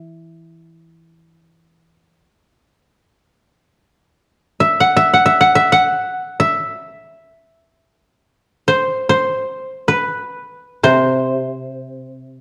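The recording has a dark production, with a moderate recital-hall reverb of 1.3 seconds surrounding two koto parts that sit dry and up front. This solitary, meditative excerpt of Japanese chamber music unfolds in free time, tuned to A4 = 439 Hz. One koto, plucked with fingerpicks, carries the melody throughout in a woody upper register between B4 and F#5. A second, mellow koto, also played with fingerpicks, gives a low accompaniment between C3 and E3 at a softer level. It drops out at 2.2 seconds, leaving the melody alone, and returns near the close as the music slows from 10.0 seconds.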